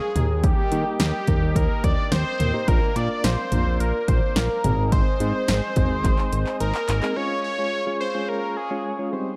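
A phased, detuned sawtooth analog lead carries the melody over glassy, ethereal glass harmonica chords from the start of this bright, wistful synth-pop excerpt at 107 BPM, joined at 0.2 s by soft, round electric-piano-like synth keys with chorus and tremolo, a fat, saturated analog bass and a punchy, dry drum machine of kick, snare, hi-hat, handclaps and toms, which plays a fill from 6.0 s before bass and drums have dropped out by 7.2 s, leaving lead, keys and harmonica as the chords move from Eb through Bb and Ab to Db in a dark, lightly reverberant mix.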